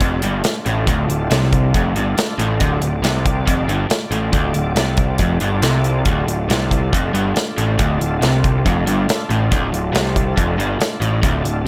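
Brooding and heavy, this short cut from a longer blues rock and southern rock track rides a straight 4/4 at 139 BPM, sitting on a D minor chord throughout its roughly 11.7 seconds. A crunchy, double-tracked electric guitar drives a low riff between D2 and C3, its bright, picked tone pushed up front. Beneath it, a fuzz-drenched picked bass growls from D1 to C2, direct and amped with overdrive, matching the guitar's forward placement. An acoustic rock kit with a punchy kick, medium-tuned snare and hi-hat stands close in a studio room. Further back, a thick, gritty tonewheel organ holds sustained chords from D4 to Eb5, colored by chorus vibrato, second harmonic percussion and a slow rotary speaker, all within a small room ambience.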